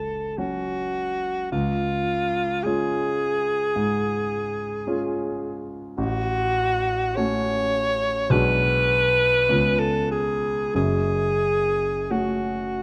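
An alto saxophone and a concert grand piano begin together in this melancholic, elegiac fragment of a romantic classical duo, moving slowly and freely in a rubato feel. The saxophone carries the solo melody up front with a warm, classical vibrato and a distant, roomy character, while the piano accompanies beneath it with deep bass and short-sustained chords that settle back onto the home minor chord at 10.8 seconds. Close, detailed microphones capture both instruments within a moderate concert hall reverb.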